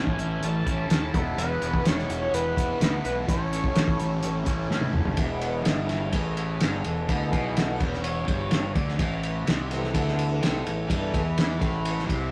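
This excerpt of kaleidoscopic, trippy psychedelic rock in E mixolydian opens with a bold, retro octave-doubled lead singing a chorus-soaked melody over reedy harmonium chords, a bright, double-tracked guitar riff steeped in overdrive and phaser, and a round, fuzzed electric bass. The drums sit up front at a straight 126 BPM in 4/4, their cloth-damped, thuddy sound muffled and gritty with a fat snare, tight kick and dark cymbals. The sawtooth-edged lead, with its detuned, wave-folded tone and vibrato, drops out at 4.7 seconds as a drum fill carries the band into the second section. From 5.2 seconds the breathing, vintage harmonium takes a solo while a very quiet tanpura enters beneath it with a shimmering, buzzing drone. The chords move from Aadd9 through Eadd9 and A to E, settling on A5, and the whole rough rehearsal-room recording carries tube saturation and a moderate studio reverb.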